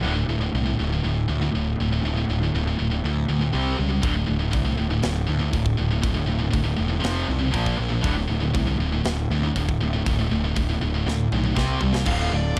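Aggressive and relentless, this short heavy metal excerpt at 120 BPM in D minor opens with a bright, picked distorted guitar in the background and an up-front high-gain guitar riffing over a fuzz-laden, overdriven bass; a tight acoustic metal kit with bright cymbals and a china crashes in at 4.0 seconds, a drum fill runs from 11.1 seconds, and at 12.1 seconds a dark overdriven lead guitar and a very quiet, lush bowed string section arrive on a D minor chord, all within a dark small-room production.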